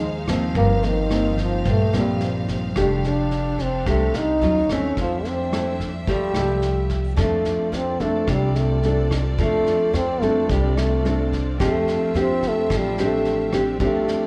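A mellow trombone carries the melody up front in this sophisticated, breezy bossa nova, its soft attack, light vibrato and scooped notes giving the line a relaxed jazz voice. Beneath it, a nylon-string guitar plays thumb-plucked classical accompaniment, with faint finger squeak audible, while a woody pizzicato upright bass anchors the low end. A clear, lush symphonic string section holds bowed, sustained chords further back in the mix, and a dark, smooth vintage brush drum kit with a tight kick, rim click and snare enters at 0.3 seconds. The tempo sits at a straight 109 BPM in F major, and the harmony moves through colorful extended chords such as Eb69/G, Ebm9 and Fmaj9 before settling on F6 and Dm11 in the second half. The whole ensemble sits in a wet recital hall reverb, as if played in a church or concert hall, and this excerpt is cut from a longer piece.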